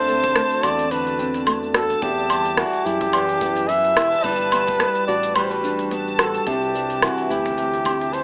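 Through a small-speaker sound with light reverb and studio ambience, this hopeful folktronica excerpt in G major moves at 108 BPM with a swung 4/4 feel, as a mellow, up-front flugelhorn with vibrato and scooped notes carries a jazz-style melody carrying 12-bit sampler grit over fingerpicked nylon-string guitar arpeggios with finger squeak, a warbling, nostalgic tape-like pad with chorus, a round, dark analog bass, a bright, reversed granular swelling texture, crisp-hatted organic electronic drums with rim click, shaker and woodblock, and a very quiet, distant kick, before fading out from 7.2 to 8.2 seconds.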